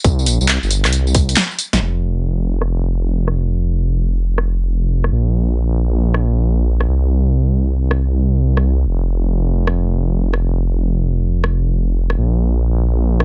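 A dark, detuned sawtooth bass rumbles up front through this two-step UK garage passage, its deep, saturated tone beating as it holds sustained, fast-attack notes low in the register. The mood is sunny and soulful, carried on a swung 16th-note groove in 4/4. A tight, layered electronic kick opens the music but drops away at 1.3 seconds, just ahead of a drum fill from 1.4 seconds and a band accent at 1.7 seconds. A punchy analog drum machine runs throughout, supplying handclaps, hi-hat, rim click, snare and tambourine, with low-pass filtering on its hats, snare and percussion, a short room around the snare, clap and hats, and a tape-warm character. The mix is dry and close, with the top end rolled off above 10.6 kHz.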